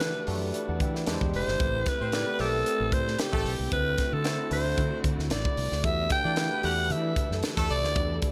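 A raspy, gritty alto saxophone carries the melody up front, its punchy pop-style phrasing full of scooped notes and vibrato, with a touch of delay trailing behind it. This slick, urban slice of polished 1980s jazz-funk pop moves at 113 BPM in 4/4 with a light sixteenth-note swing, sitting in E minor. A barky, bright tine electric piano comps through a combo amp with analog chorus. A fretless electric bass, direct and amped with ensemble chorus, anchors the low end beneath a tight, acoustic funk kit with a punchy kick and high-tuned snare. At 2.0 s a clear, jazz-style horn section enters with a second line, while a lush, distant bowed string section holds very quiet sustained chords through the Em11, E7alt, Am9 and D9 changes, all within light studio reverb.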